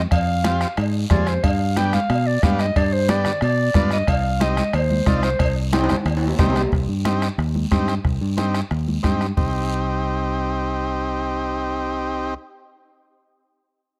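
A solo clarinet in classical style and a round, punchy fingered electric bass sitting up front open this driving, passionate cumbia fragment in C harmonic minor at 182 BPM, moving from Fm through G7 to Cm. Bombo with a soft beater, bright congas in the background, raspy guiro and ringing, distant cowbell and timbales join at 0.1 s, and a buzzy vintage combo organ with heavy vibrato follows shortly after. The clarinet stops at 5.5 s and a drum fill leads into a new section, then the bombo, congas and guiro drop out at 9.4 s, leaving organ and bass to carry on to the end of this dry, close 1970s-style small-room recording.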